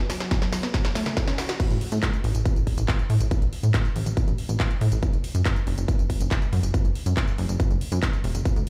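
Euphoric and soaring, this short cut from a longer uplifting trance track runs at 140 BPM in 4/4 with a straight feel, in F# minor and tuned slightly below standard pitch. It opens on a brief build-up in which a lush, detuned unison pluck plays arpeggios with a filter sweep over an F#5 chord, colored by cassette tape, tape echo and sidechain pumping, while a drum fill rolls underneath. The pluck stops at 1.5 seconds, and the drop lands at 1.6 seconds with the harmony falling away entirely. From there a wave-folded, funky analog bass with a fast attack and decaying filter pluck drives the low end, pumping against an up-front, punchy electronic kick. The big-room dance kit adds crash cymbal, handclaps, metallic hats, tambourine and a punchy snare, its upper parts thinned by high-pass filtering. The overall sound is dry, yet it carries the air of a big sound system in a bare room with large studio reverb.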